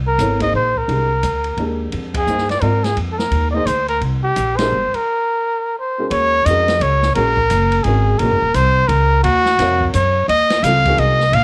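A present trumpet with vibrato leads this intense, searching modal jazz excerpt, sitting up front as the solo voice over a swinging triple metre. Beneath it, a woody, thumpy upright bass played pizzicato on steel strings anchors the low end, also close and forward in the mix. A dark, mellow upright piano with short sustain supplies the accompaniment. An acoustic drum kit of kick, snare, hi-hat and ride sits mid-forward, with a boomy kick, a medium-tuned snare and dark cymbals with a rolled-off top. The band hits accents together at 2.1 and 4.5 seconds, then drops into a brief break before the harmony moves to a new modal centre at 6.1 seconds for the second section, all set in a small, intimate room.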